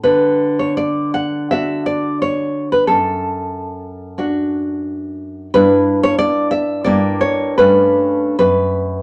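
This is a romantic piece for solo classical guitar in D major, a tender, warm fragment cut from a longer piece. It moves in 4/4 at a flexible rubato pace that drifts between 70 and 94 BPM. A single fingerpicked nylon-string guitar plays alone throughout, sitting up front with a warm acoustic tone that spans from F#2 to F#5, and finger squeaks add a human touch. The harmony rests on D before shifting to D/F# at 2.9 seconds, then moves through Em7/G, Em7b5/G and A7/G, finally falling away from any chord at 8.4 seconds. A wet studio reverb gives the guitar a gentle halo of space.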